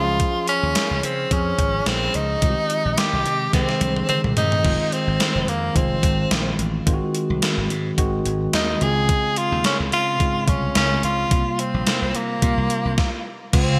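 The recording has a bright, polished 1980s digital sheen, set in a moderate plate reverb. This moody, urgent pop cut, taken from a longer piece, rides a lightly swung sixteenth-note feel. A clear, punchy tenor saxophone carries the melody up front, its vibrato trailed by a digital delay. Beneath it, a tine electric piano plays clean accompaniment through its built-in speakers, and an electric slap bass sounds direct and amped. A sampler-style drum machine sits up front with a thumpy kick, an overdriven edge and a gated-reverb snare re-recorded in a small room, adding a fill at 3.5 seconds. The chords move through Dbmaj7, Abmaj7, Fm7 and Ab7 before returning to Dbmaj7 and landing on C7sus4. After a stop at 13.0 seconds, a detuned sawtooth pad with chorus, a slow attack and a resonant filter swell enters in the background at 13.5 seconds.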